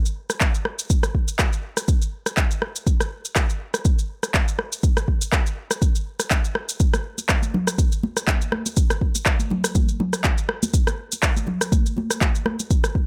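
Earthy and warm, this house groove, cut from a longer piece, sets a deep, up-front electronic kick beneath a produced, up-front mix of electronic shaker, rim click and handclaps in a small room ambience, all on a lightly swung 16th-note feel, before high-tuned, thick-skinned acoustic congas played with soft hands join close and dry at 6.9 seconds.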